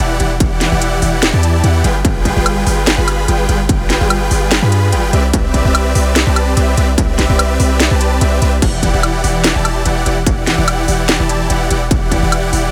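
Huge, detuned supersaw chords lead this bittersweet, dreamy future bass passage, their bright, lush unison sawtooth tone sitting up front with sidechain pumping and a touch of delay. At 146 BPM in a half-time 4/4 feel in E minor, the chords move from Em9 to G7b9, then to Cmaj7 at 5.1 seconds, and back to Em9. Beneath them, a deep, boomy 808-style bass with a sine body, a noise layer and a fast attack that decays mellowly pumps along with the chords. A trap kit with a sharp snare, crisp hi-hats, crash cymbal and woodblock enters at 0.2 seconds, joined at 0.4 seconds by a layered, distorted electronic kick with a tape-warm edge. The mix is dry, and this short cut is taken from a longer piece.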